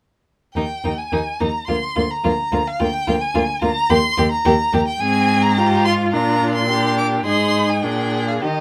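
In a brisk 2/4 at 107 BPM, handled with a supple rubato, this graceful, cheerful classical-period string quartet movement in Eb major is cut from a longer piece and tuned to A4 = 438 Hz. All four bowed instruments, each a single player, enter together at 0.6 seconds and play through to 8.6 seconds. The first violin carries the melody between Eb5 and D6, sitting up front yet slightly distant, with expressive vibrato and portamento. The second violin supplies a soft-attacked second line between Eb4 and Ab4, and the viola adds a distant, expressive accompaniment between Bb3 and F4, both with vibrato and sliding portamento. Beneath them, the cello holds the bass from D2 to Eb3 with a smooth, even, rich tone that also sits up front, while light reverb rounds out the sound as the harmony moves from Bb/D through Ab and Fm/Ab before closing on Bb7.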